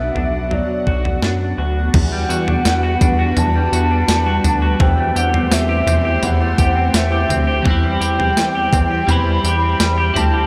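Dream pop with an ethereal, melancholic mood, this excerpt moves at an unhurried, straight pace in four, cut from a longer piece and bathed in a lush hall reverb that gives it a big arena sound. A warbling, nostalgic synth lead carries the melody with chorus, delay and slapback echo, floating over an airy, detuned pad that sustains the chords with ensemble chorus and its own reverb. A semi-hollow electric guitar picks arpeggios through lush chorus, delay and slapback echo, while a glossy, nasal synth bass with a fast pluck holds the low end. An overdriven 8-bit drum machine sits up front from 0.2 seconds, with a thumpy kick, snare, tambourine, toms and crash cymbal. A very quiet, woody marimba adds a buzzing texture between 2.7 and 8.2 seconds, and a twangy clean electric guitar with tremolo joins the accompaniment at 7.6 seconds as the harmony drifts from Bm through Gmaj7/E and Am7/E to C/E.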